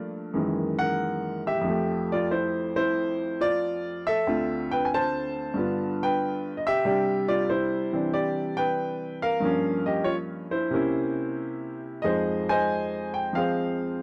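Swung eighths with a loose, rubato push set the pace for this sophisticated, playful solo jazz fragment in 4/4, cut from a longer piece and carried entirely by an upright piano ranging from D2 to A5. The piano sounds brilliant and woody, sitting up front in a dry, close 1970s-style studio with small-room ambience. Rich harmonies such as F#13, Fmaj9 and C7b9 pass by before the music turns to a new section on Fm7 at 12.1 seconds.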